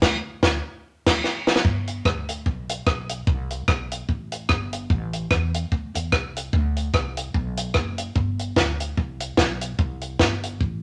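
A dry, up-front cocktail drum kit with a punchy kick, high-tuned snare, rim click, hi-hat and dark cymbals drives this joyful, bouncy ska cut at 148 BPM in G major with a swung feel, opening on a band accent and a drum fill ending at 1.6 seconds before settling into a groove over a woody, thumpy pizzicato upright bass, all in a moderate studio reverb.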